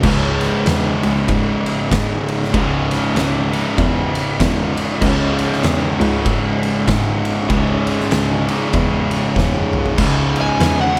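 A heavy, sludgy stoner and doom metal excerpt opens with a bright, double-tracked, overdriven stack guitar riffing over two fuzzed-out guitars in the background, one dark and one warm, with a smooth, bowed cello carrying the bass line with vibrato and a touch of overdrive. An oversized, low-tuned acoustic kit sits up front in a pumping stone room, with a punchy kick, fat snare and dusky cymbals, while a very quiet tonewheel organ joins at 5.0 seconds with clear, lightly overdriven sustained chords, key click and a slow rotary speaker. After a drum fill at 9.4 seconds, a compressed, up-front fuzz lead guitar enters at 10.4 seconds with a high solo melody, all under light reverb in a swung groove.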